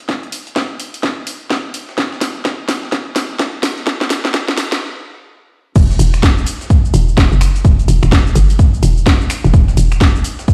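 A gritty, pitched-up breakbeat kit sits in the background as a punchy overdriven kick and a bright, cracking house kit with snaps, shaker and crash build through a drum fill in this bouncy, swaggering bass house cut in E minor at 127 BPM with a swung 16th feel, stopping at 4.8 seconds before the drop at 5.8 seconds brings in a hollow, knocking FM bass, dark and tube-saturated with sidechain pumping, all heard as if on a big sound system in a bare stone room.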